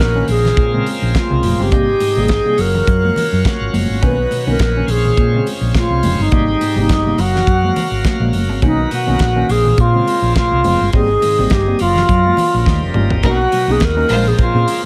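Up front, an airy wooden-headed alto flute carries the melody with a straight, tongued tone and a slightly unsteady edge, trailed by tape echo, in this celebratory, joyful disco cut from a longer piece, moving at 104 BPM in 4/4 with a light swing on the sixteenths. Beneath it, a gritty, shouting tonewheel organ holds sustained chords through a slow rotary speaker, while a dark, round hollow-body electric bass, fingered and amped, anchors the low end. A damped 70s drum kit with a fat snare and tight kick drives the groove, joined by very quiet, high-tuned congas struck with hard hands, and a worn, slightly out-of-tune tine electric piano adds lightly overdriven accompaniment in the background. The harmony cycles through Bbm9, Abmaj7, Gbmaj7 and Bmaj7, and a drum fill over Eb9 at 12.7 seconds leads into a new section at 13.2 seconds, where a lush, distant studio string section enters with a bowed, vibrato-rich second line. 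Light reverb and a small room ambience frame the whole groove.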